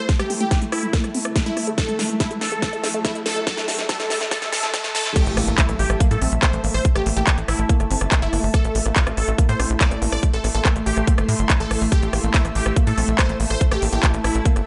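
A tight, up-front electronic kick drives this alien psychedelic trance excerpt at 142 BPM in A phrygian, joined by a big-room kit with a huge snare and crisp hats. A punchy, detuned supersaw stab with phaser and delay carries the melody over a dark, warbling wave-folded pluck riff, a mellow pulsing gated texture and a bright, ethereal airy pad, all pumping with the sidechain. A background riser builds from 1.7 seconds into an impact at the drop, where a saturated, punchy sequencer bass arrives at 5.3 seconds.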